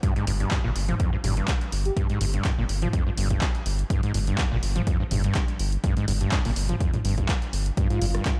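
An overdriven acid bass drives this trippy, gritty acid house excerpt with a squelchy, resonant sawtooth riff, distorted and colored by analog chorus and delay, over a round, deep analog bass that pumps to the sidechain. A punchy, tape-warm electronic kick sits up front beside an analog drum machine of handclaps, hi-hat, rim click and toms, all with a light swing on the 16ths. An airy, dreamy lead flickers briefly in the background at 1.9 seconds with chorus and tape echo, and a smooth, detuned pad slips in with chords at 7.8 seconds, all within light digital ambience.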